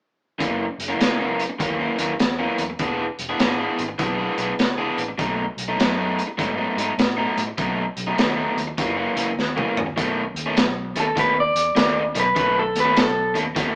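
Laid-back and gritty, this electric blues shuffle rolls along in a relaxed swing, cut from a longer piece. A crunchy overdriven guitar carries the riff up front from 0.4 seconds, moving through F#7, E7 and B7 changes while a dark, round, foam-muted fingered bass sits low beneath it. The breakbeat drum kit sounds saturated and smooth with a rolled-off top, pairing a high-tuned snare with a punchy kick, hi-hat and toms, and a drum fill at 9.4 seconds leads into a new section that lands on a B9 chord. At 11.0 seconds a bright, twangy guitar through a small old amp steps forward with a short, slightly broken-up melody, its pitch drifting with a warbly wobble. The band plays live in one room with moderate studio reverb and a small-speaker character that keeps the whole performance close and raw.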